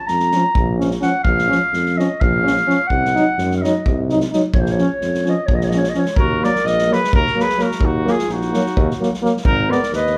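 This bittersweet, virtuosic Balkan brass band folk passage in 7/8 is cut from a longer piece and played live in one large studio room with moderate reverb. A mellow, roomy clarinet opens as the featured voice. A tuba with light vibrato joins almost at once on the bass, alongside an acoustic drum kit up front, its tight kick and medium-tuned snare played with bundle sticks. A clear French horn and a smooth-topped euphonium hold the accompaniment, with the euphonium sitting in the background. At 6.2 seconds the harmony turns toward a new minor centre and a distant trumpet takes the melody up front, while the clarinet carries on as the second line. The horn and euphonium stop at 9.8 seconds, and the others play on to the end.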